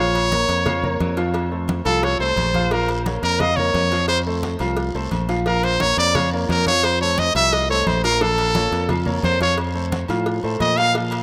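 A straight 4/4 salsa groove at 175 BPM drives this fiery, danceable excerpt in Bb harmonic minor. Hard-handed congas, close and dry, ring in the background beside a very quiet, tight, high-tuned cowbell and metal-shell agogo bells and timbales that sound distant in a large room. A raspy guiro joins very quietly at 2.7 s. Up front, a brilliant trumpet takes a forceful, pop-style solo with vibrato and scooped notes, punchy and present between F4 and F5. A clear, natural baby grand piano comps beneath it, while a growly fingered electric bass sits up front as the chords alternate between Bbm and F. The whole has the rough feel of a home demo mix, set in a moderate plate reverb.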